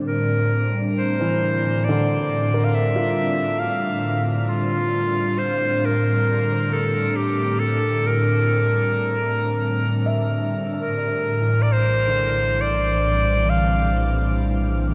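Ambient, serene and luminous, this passage in 3/4 is cut from a longer piece: an ethereal, detuned pad with chorus and phaser holds sustained chords up front under a filter sweep, while a bright solo clarinet carries a classical-style melody with tape echo. A soft, felt-muted upright piano plays arpeggios in the background and fades in from 10.8 s, when the harmony moves from Bbmaj7 to Bbadd9, and a deep, rumbling, warbling drone enters at 11.9 s. A long shimmer reverb bathes the mix.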